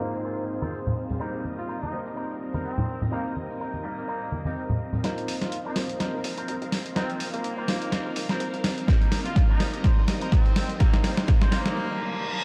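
A swung 4/4 disco house groove opens with a punchy, tight horn section carrying the melody over a brilliant concert grand piano with 12-bit grit, a swirling phased string machine, tambourine and congas, and a twangy envelope-filtered electric guitar riff, each of them pumping and filtered inside a dreamy cathedral reverb. At 5.0 s the hand percussion gives way to a gritty, overdriven sampler-style kit of hi-hat and snare and a very quiet, plucky analog bass, building through a drum fill while a tape-warm electronic kick joins up front at 8.9 s. A short break and an up-front reverse cymbal at 12.0 s close this sunny, joyful excerpt.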